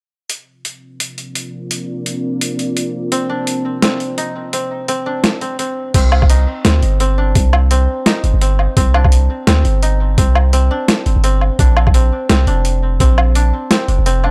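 Opening on a moody, detuned analog pad with chorus and sidechain pumping over a gritty, overdriven boom bap sampler-style kit with a high-tuned snare, this dark, heavy half-time drum and bass excerpt adds a woody, fingerpicked koto arpeggio with tape echo at 3.1 s, then at 5.9 s the pad drops out as a deep, mellow 808-style bass and a thumpy, pitched-down electronic kick enter, the dry mix carrying transformer saturation.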